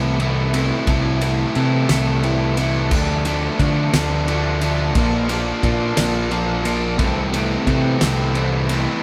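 Post-rock at a slow 59 BPM in a straight 6/8, this brief cathartic, brooding fragment of a longer piece moves through Am/C, Dm and Bb before returning to Am/C. An overdriven, double-tracked electric guitar carries a dark, picked riff up front with a touch of spring reverb, while a growling fingered bass adds bright, punchy overdrive beneath it. A loose acoustic indie kit enters at 0.2 seconds with a fat snare, punchy kick, crash and ride cymbals and a pumping room sound, the whole band heard playing live together in one space with light reverb.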